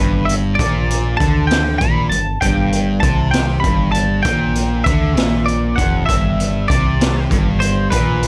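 In a straight 6/8 at 65 dotted-quarter beats per minute, this jangly, upbeat indie rock excerpt opens on a G5 chord, with a bright, twangy twelve-string electric guitar carrying the melody through a slapback echo while a thick, double-tracked fuzz guitar drives a low riff up front. A growling fingered bass with punchy overdrive anchors the bottom, and a raw garage drum kit enters at 0.3 seconds with gritty, saturated hi-hat, boomy kick and a medium-tuned snare, its top end rolled off. The dry sound keeps every part close and immediate until the cut at 8.3 seconds.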